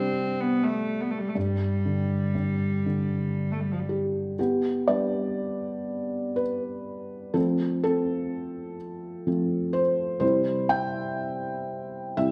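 Rubato in 3/4 at about 61 BPM, this wistful, tender Celtic slow air in G mixolydian, cut from a longer piece, opens with a rich, floating cello melody, bowed sul tasto by one player up front, over a felt-muted upright piano with audible action noise, and after the cello stops at 3.9 seconds the intimate, mellow piano plays alone from 4.4 to 12.3 seconds in a reverberant recital hall.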